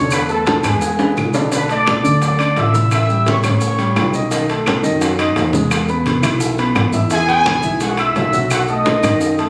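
Captured on a phone in a small room with studio reverb and compression, this festive salsa excerpt moves at a brisk 172 BPM in 4/4 with a joyful lift. A mellow, tight trumpet section sits up front with light vibrato and plate reverb, carrying the melody until 4.1 seconds and returning at 7.1 seconds, over an intimate grand piano with audible action noise and a dark, thumpy pizzicato upright bass on gut strings. Low-tuned congas struck with hard hands lead the percussion alongside ringing metal-shell timbales, distant high-tuned bongos, dry woody claves and grainy maracas, with a drum fill arriving at 6.1 seconds.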